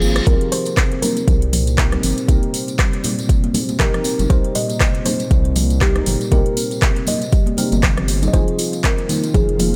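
A deep, up-front electronic kick drives this hypnotic afro house excerpt at 119 BPM with a 16th-note swing, under a round, wave-folded analog bass and a meditative stainless-steel handpan whose arpeggios pump with the sidechain alongside a dark, detuned chord stab carrying chorus and dub echo. A woody, hollow kalimba melody ringing through dub echo floats above high-tuned background congas, a jingly close tambourine and an afro-pop kit of handclaps, metallic hats, rim clicks and toms that enters at 0.2 s, just before the drop at 0.3 s over Cm7 moving to Fm7 at 8.3 s. A very quiet, ethereal pad sounds only at the edges, returning at 9.1 s, all set in a small room.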